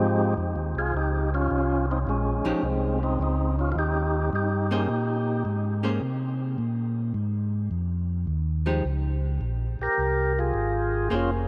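A soul jazz organ trio piece in F minor at 106 BPM with a swung 4/4 feel, bluesy and soulful in mood, cut from a longer performance. A percussive tonewheel organ carries the melody up front, its full, clean tone marked by key click and second-harmonic percussion through a slow rotary speaker; it plays from the start to 5.4 seconds and returns briefly at 9.8 seconds. Underneath, a mellow tonewheel organ holds down the bass throughout, round and dark through a stationary speaker. A picked, hollow-body archtop guitar, miked and amplified, enters at 2.4 seconds as quieter accompaniment with an electric, clean sound. The harmony moves from Fm9 through Bb7sus2 and Fm7 to Bbm9, and the whole trio sits in a vast, echoing cathedral reverb with a long six-and-a-half-second tail.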